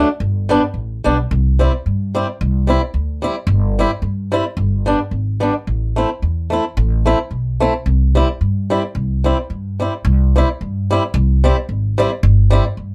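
A lilting two-beat pulse with a lightly swung eighth-note feel drives this short, jolly cut from a longer alpine folk dance-band tune. A fingerpicked, swing-style acoustic guitar carries the accompaniment in a boxy, warm voice, sitting up front in the mix. Beside it, a pizzicato upright bass strung with steel strings adds a woody, dark low end, also placed up front. The harmony moves from G to C, through C over G and back to G, then touches A minor before returning to C and resting on C over G near the close. The guitar drops out at 12.6 seconds, and the bass rings on alone until 12.9 seconds, all inside a light reverb that keeps the bouncy feel close and intimate.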